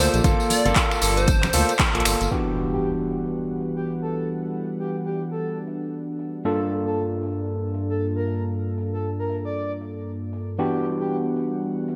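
An overdriven tine electric piano sits up front with bright, barky stabs roughened by vintage 12-bit sampler grit and pumping against the sidechain, over a soft chorused analog pad that moves between Gm9 and Em9 in this late-night deep house cut at 116 BPM in E minor, swung on the 16ths. The opening 2.3 seconds bring a detuned, punchy unison lead, a smooth sawtooth bass, a faint shimmering string machine, jingly tambourine, background congas and a dry overdriven electronic kick, all under a layered drum kit of snaps, handclaps and metallic hats that runs through to the end. At 2.3 seconds an electronic impact marks a shift as a breathy flute-like synth lead with vibrato takes the melody, all within a lush hall reverb and a bright 1980s-style digital sheen.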